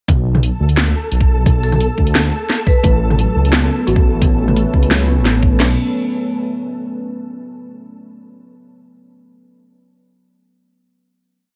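Tense and dark, this short half-time drum and bass piece at 174 BPM in B minor rests on a deep, rumbling detuned saw bass with long gliding notes and two up-front layered electronic kits, one with a knocking kick, cracking snare and crash, the other a sparse beat of bright hats, snare and low tom, both re-recorded in a small room. A grainy, flickering texture holds a high note, a metallic vibraphone struck with hard mallets answers with short phrases through tape echo at 1.6 seconds, and from 2.8 seconds a woody, hollow kalimba loops a soft 10-step sequence that drifts against the bar as the chords move from Bm to Aadd9. A moody, chorused ambient pad with sidechain pumping enters at 3.8 seconds before the piece settles on a final Bm chord.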